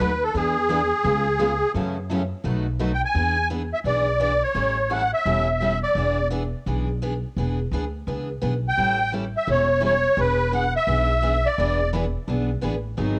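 Acoustic string swing in the jazz manouche vein, charming and swinging, this excerpt from a longer piece sets a reedy, shimmering musette accordion up front on the melody, dropping out between 6.3 and 8.7 seconds before returning. Two bright, fresh-stringed picked steel-string guitars accompany, one throughout and the other only at the opening and again from 11.6 seconds, over a woody, thumpy pizzicato upright bass on gut strings. The home cassette recording carries moderate spring reverb and small room ambience, with the accordion and guitars bearing a tape tint.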